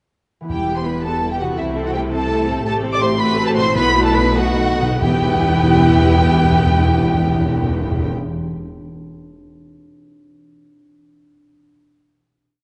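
A very quiet concert harp sets ringing rolled chords in motion at 0.4 s before a stormy, dramatic romantic orchestral movement in 6/8 sweeps in, with lush, up-front violins singing an expressive vibrato melody that a second violin section doubles at the octave, over a rocking two-note viola figure, slow swelling French horn chords, and a rich cello and double bass line in the background, while close, dry timpani strike single bass notes and roll into a fill at 4.4 s as the music slows and settles onto a final chord at 5.0 s, all bathed in a dark, generous scoring-stage reverb.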